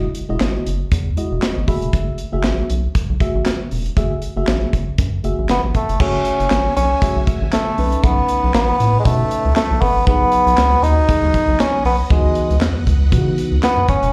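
Slick and funky, this early-eighties boogie funk excerpt at 118 BPM in F# dorian, caught live through a club PA, pairs a rubbery, hollow square bass and a dark, up-front studio drum kit with handclaps under a mellow, round FM electric piano that slips in a fill at 1.2 seconds, before a soft-attack bassoon takes the melody at 5.5 seconds and a swirling, phased string machine drifts in behind it at 6.0 seconds as the chords move from Emaj9 to C#m11.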